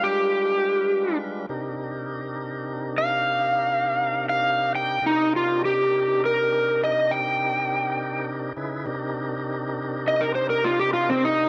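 Smoky and mournful, this slow C minor blues moves at 68 BPM in a straight 12/8, in a passage cut from a longer piece. An up-front, overdriven electric slide guitar carries the melody throughout, fingered and warm, turning to a solo from 5.0 s, while a full tonewheel organ holds sustained chords beneath it through a slow rotary speaker, with light overdrive, vibrato and audible key click. The harmony moves from G7b9 to Cm9 at 1.5 s, and the recording sits in light reverb with some lossy compression artefacts.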